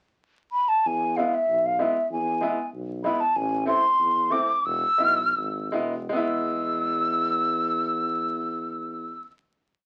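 Bittersweet and soulful, this brief klezmer piece in E major moves in a straight 2/4 at 72-96 BPM. An airy, hollow jazz flute opens the pickup at 0.5 s with an up-front modal melody full of ornaments and vibrato. A mellow tuba plays root-and-fifth bass on the main beats, while a bright, woody upright piano adds off-beat triad chords with audible action noise. The tempo slows from 3.3 s as the harmony dips to A minor and back to E, and the group settles onto a final chord at 6.1 s, all heard through a small room and the crackle of a very old 78 rpm record.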